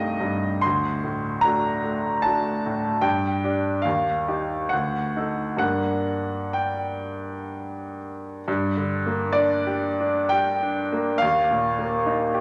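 A romantic classical nocturne for solo piano in G minor, this brief passage drifts in 3/4 with a rubato feel between 59 and 78 BPM, carrying a melancholic, wistful mood. The baby grand sits up front with a clear, intimate, natural tone, long sustain and audible action noise, spanning C2 to C6, while a wet recital hall reverb surrounds it. Harmonies move from Am7b5/C through D7 and Ebadd9 to settle on Gm at 5.6 seconds, and a contrasting section arrives at 8.5 seconds before the fragment, cut from a longer piece, breaks off on Eb5.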